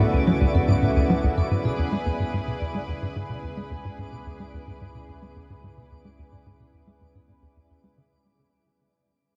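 Soaked in a huge, dreamy reverb, this hypnotic and expansive ambient excerpt at 109 BPM sets a tight, punchy sawtooth sequencer bass riff up front beneath a lush, detuned unison pad holding D6/C# and E/C# chords, while a metallic vibraphone with hard mallets rings out arpeggios in the background, a very quiet analog drone evolves under a filter sweep, and a twinkling granular texture sparkles with octave-up shimmer as the whole piece fades out across its 8.1 seconds.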